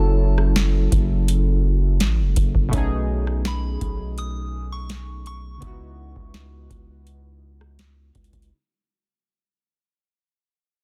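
Moody and late-night, this contemporary R&B excerpt moves at 83 BPM in a straight 4/4 feel, centred on C# minor and fading out across its full 8.5 seconds. A soft, pure FM synth bell carries the melody high above, treated with chorus, phaser and delay, and it sits low in the mix before dropping out at 7.4 seconds. Round, evolving sawtooth keys with a filter sweep and chorus supply the accompaniment, moving through F#m7, B13 and C#m11. A long, sine-toned 808-style bass stays deep and up front, its fast attack decaying under each note. From 0.4 seconds a booming analog drum machine joins with a deep kick, crisp snare, rim click and metallic hats, its tape-warm tone placed forward in a digital ambience and a dense, heavily limited modern master.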